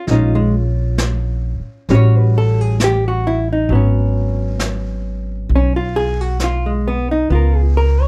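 Lightly reverberant and rough like a home demo, this short excerpt of a wistful, smoky jazz ballad at 66 BPM with a swung feel sets a dark, clean, compressed hollow-body guitar, fingered and up front, over chords moving from A#m7 through A6 and G#m7 to C#6, joined at 0.1 seconds by a woody pizzicato upright bass, also up front, and a mid-forward brush kit on snare and hi-hat with a rolled-off top, all three playing on to 8.1 seconds.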